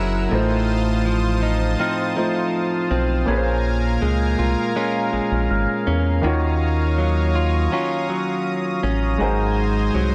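A rubbery, hollow square bass sits up front with a clean, direct-recorded electric guitar picking arpeggios through tape echo, over a lush, detuned unison pad with chorus and a natural grand piano in the background, opening this moody, sensual R&B excerpt at 81 BPM in Eb dorian. At 1.8 s a very quiet, bell-like celesta, slightly out of tune, adds delicate texture high above as the chords move from F7/A through Bbm7 and Ebm9 to Ab7. The sound is dry and gritty, with transformer saturation and a small room ambience.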